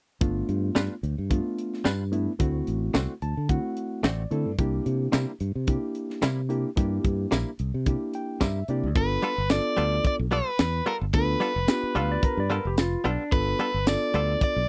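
An overdriven electric guitar, picked and up front, takes the melody at 9.0 seconds in this swaggering, gritty soul blues cut from a longer piece, moving at 110 BPM in G mixolydian with a light sixteenth-note swing over G7, D7 and C7 before settling on G9. Beneath it sit a tight funk drum kit with a high-tuned snare and tambourine, a growly, punchy fingered bass, and a reedy electric piano heard through its built-in speakers that adds fills, while a bright, twangy clean guitar recorded direct with tremolo supplies stabs. A dark lap steel slides in at 12.0 seconds for a brief second line, in a dry, close 1970s-style studio recording.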